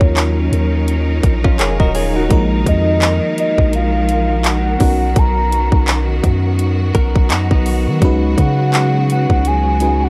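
Moody and late-night, this contemporary R&B excerpt moves at 84 BPM in Eb minor with a swung sixteenth feel, as a hard-clipped trap kick, metallic hats and handclaps sit up front beside a deep, mellow 808-style bass that holds long decaying notes. A dark, round octave-layered synth lead carries the melody with chorus, tremolo and vibrato, over a dreamy FM electric piano with a soft pad layer and a clear, smooth-topped studio string section sustaining chords through Ebm9, Bb7sus4, Bmaj7 and Db7sus4. A clean, direct-recorded electric guitar enters with short picked arpeggios drenched in lush chorus at 1.4 and 6.9 seconds, all set in digital ambience with a dry, gritty hardware character.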